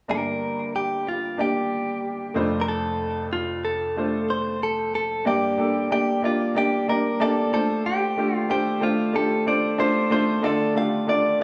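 A straight 4/4 pulse at 93 BPM carries this earnest, driving pop piece in G minor, tuned slightly sharp to A4 = 441 Hz and cut from a longer work. A bright, woody upright piano sits up front as the accompaniment, spanning from deep F1 up to D5 with a touch of plate reverb. Over it, a clean, picked electric guitar, recorded direct and compressed, carries the melody between F4 and F5, colored by both spring and plate reverb. Both parts play together from 0.1 s to the end, moving from Gm to F6 and back, with a new section arriving at 5.3 s and the harmony turning to Dm at 10.4 s. The whole is set in a wet, large studio reverb with a 0.8-second decay and a hint of small room ambience, while both parts stay up front.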